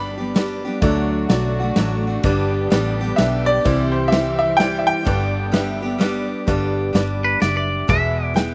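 A swung three-beat waltz lilt carries this sunny, down-home honky-tonk and classic country fragment, cut from a longer piece. A brilliant upright piano with audible action noise takes the solo spotlight through the opening 6.5 seconds, singing in short phrases above a detuned, jangly second upright that adds boxy chords with slapback echo. A full-bodied dreadnought acoustic guitar, also with slapback, picks out the accompaniment, while a foam-muted, round electric bass holds the low end and a smooth, dark country drum kit, with a tight kick and medium-tuned snare, fills in hi-hat and ride. From 0.8 seconds a very quiet, veiled con sordino string section bows sustained chords until the piano solo ends. At 7.2 seconds a bright, clean, twangy electric guitar steps up front with a brief compressed melody wrapped in slapback echo, all in a dry, open-air sound with little reverb.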